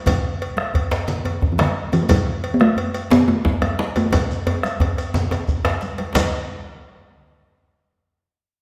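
In a straight 12/8 pulse at 118 BPM, this festive, powerful West African traditional drum ensemble excerpt opens with an up-front talking drum carrying a short-ringing melody between D3 and B3 in G major pentatonic, joined from 0.1 s by a round bombo, metallic close-miked cowbell, very quiet high-tuned congas, a deep djembe, a grainy shekere in the background, and a second soft-handed djembe entering up front at 0.9 s, all wrapped in a wet scoring-stage reverb, with a drum fill from 4.1 s leading into a new section at 6.2 s.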